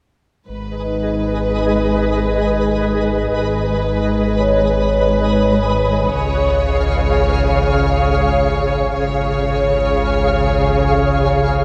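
This eerie, uneasy cinematic suspense cue, cut from a longer piece, opens at 0.5 s with bowed string sections and a deep, sustained sine sub bass with octave holding a drone underneath. A distant, clear violin section carries the intense melody with vibrato, while the cello section and, further in the background, a lush double bass section supply a rich, smooth, even foundation. Just after, at 0.7 s, a twinkling granular texture rises with a slow attack to sit up front, sustaining chords with a sparkling octave-up shimmer and its own built-in reverb. A close-miked, dry vibraphone played with soft mallets adds a mellow, metallic ring and slow motor vibrato in the background. The harmony shifts at 6.1 s, all in free time, and the parts carry through to the end inside a stone room reverb.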